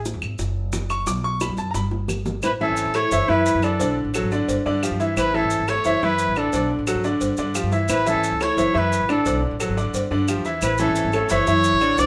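Moderate studio reverb surrounds this relaxed, danceable Cuban son and guajira cut, with a bright, intimate, polished baby grand piano up front playing arpeggios, its action noise audible, over growly, woody pizzicato upright bass, round low-tuned bongos and cowbell, grainy close maracas, and woody claves in the background. After a drum fill at 1.9 seconds, a punchy trumpet with vibrato takes the solo melody from 2.4 seconds, sounding distant and roomy yet up front. A warm, fingerpicked flamenco guitar adds a second line behind it as the harmony cycles through Amaj7, F#m7, Bm7 and G5.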